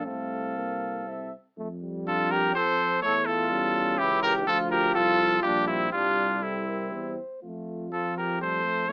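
With an AM-radio sound and light reverb, this noble classical brass quintet fragment in F major moves at 122 BPM in a rubato 3/4, the bright trumpet with light vibrato carrying the melody up front while a distant, roomy flugelhorn sings a second line, mellow French horn and trombone accompany in the background, and a soft-attack tuba holds the bass.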